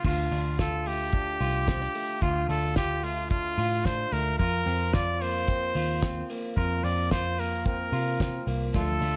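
A bright, up-front trumpet sings a nostalgic melody with light vibrato and scooped notes over a slightly broken-up, lo-fi electric guitar arpeggio, a round foam-muted bass and a cloth-damped, thuddy drum kit with a fat snare and dark cymbals, moving from Dm to Fsus4 in this straight 110 BPM jangly indie pop excerpt, while a full-bodied steel-string acoustic guitar enters only at 8.7 seconds in a small room ambience.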